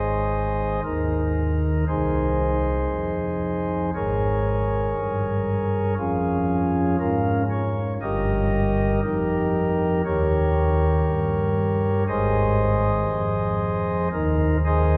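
A pipe organ on soft flute stops carries this short cut from a longer classical piece, playing alone from start to finish with a warm, romantic voicing that sits up front. The chorale-style writing unfolds in Ab major at a slow 59 BPM in 4/4, with a rubato feel that lets the phrases breathe. The mood is majestic yet serene, as the voicing spans from a deep G1 up to Eb5. The harmony moves from Ab through Bbm7 over an Ab bass at 3.9 seconds and Eb7 over G at 8.0 seconds, settling back on Ab at 12.1 seconds. A long, wet cathedral reverb surrounds the organ, and the sound is heard from further back in the room, giving the 15-second passage a spacious, hallowed atmosphere.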